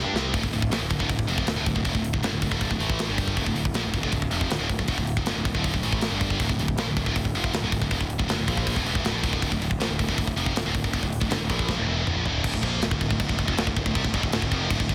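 A double-tracked, scooped high-gain guitar leads this relentless, epic heavy metal passage, its distorted picked riff sitting bright and up front over a steady 159 BPM in 4/4 with a straight feel, in D minor and tuned slightly below standard to A4 = 438 Hz. Beneath it, an overdriven picked electric bass growls low and gritty, with a direct-and-amped character. The tight acoustic drum kit is mid-forward and up front, pairing a tight kick and medium-tuned snare with sparkling crash and hi-hat plus toms, and opens with a short fill before the D minor riff settles in at 0.3 seconds. Another drum fill at 11.7 seconds leads into a new section at 12.4 seconds. A small room reverb surrounds the parts, and the dense, heavily limited modern master keeps this cut from a longer piece forceful and compact.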